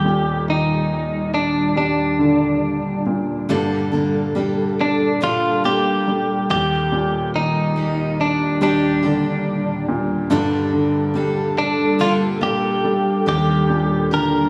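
A melancholic pop ballad in a slow, straight 4/4, this excerpt carries a feeling of longing as it drifts between Ebmaj7 and Gmadd9 chords. A bright, clean electric guitar, recorded direct and compressed, sits up front with the melody, its notes trailed by tape echo. Beneath it, a clear concert grand piano with a worn character and deep bass plays the accompaniment, while an ethereal, airy pad holds sustained chords with a slow attack, long release, ensemble chorus and its own reverb. At 3.5 seconds a full-bodied jumbo steel-string acoustic guitar enters with picked arpeggios, adding sparkle to the texture. The whole is set in light reverb with a small-room ambience, giving the fragment an intimate, natural feel.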